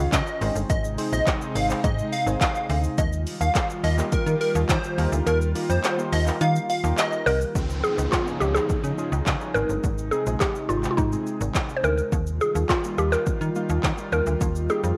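Upbeat and euphoric, this 105 BPM dance-pop excerpt in Ab major opens on a drop where a punchy, up-front deep house kit of kick, snare, dark hats, handclaps and shaker drives a snappy, metallic slap-like FM bass; round sawtooth analog keys and an airy, breathy pad with chorus pump beneath them alongside the bass, while a bright, detuned square-wave unison lead with phaser and slapback echo carries the catchy melody until 7.4 s. From 7.3 s a mellow, woody, warbling mallet-like synth pluck with chorus and slapback echo takes up the melody over Dbadd9, Ab and Ebadd9 chords as a background downlifter sweeps in, all set in a moderate echo-chamber reverb.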